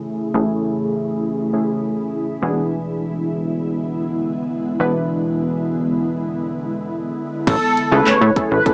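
Euphoric and upbeat, this dance-pop clip from a longer piece opens on a filter sweep, with round, detuned analog keys, a dark, ethereal pad and a punchy, funky plucked bass all pumping under sidechain over Amaj7 and E7 chords. At 7.5 seconds the drop arrives: a warm, evolving supersaw swell carries the melody through a phaser, and an overdriven, electronic pop kit bursts in with a punchy kick, metallic hats, handclaps and a crash. The whole thing has the lo-fi, small-speaker character of a home cassette recording with light reverb.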